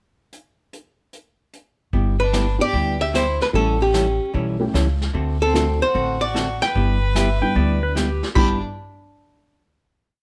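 A dark, hollow-body archtop guitar carries a picked, motif-based melody up front in this cheerful, swinging western swing piece in G major at 149 BPM, opening with a pickup bar of natural, small-room brushed drums from 0.3 seconds before a woody, thumpy gut-string upright bass plays a two-beat root-and-fifth line with walk-ups, a second archtop picks clean four-to-the-bar rhythm, a distant, earthy fiddle bows a harmony line mostly in sixths, a detuned, jangly honky-tonk upright piano comps with syncopated close voicings in the background, and a scooped lap steel slides in with volume swells and answering blues licks at 7.2 seconds, all with light reverb before the final chord at 8.4 seconds.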